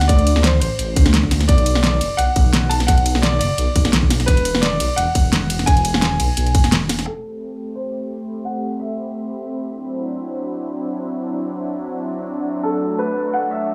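A clear concert grand piano carries the melody through this soulful, rolling liquid drum and bass excerpt, its open tone trailed by tape echo. Beneath it, a dark detuned saw bass rumbles deep and up front, while a pop drum kit with a fat snare and metallic hats joins a tight electronic kick to power the opening drop with a light swing. The kick falls away just before 7.1 seconds, when the bass and drums stop and a lush unison pad takes over with thick, warbling sustained chords treated with chorus and sidechain pumping. A filter sweep runs through this second half as the harmony moves from Am9 to D13 and Bm7, and after a short pause the piano returns briefly at 12.6 seconds. The mix sits in a small room ambience with light reverb and a low-pass filter.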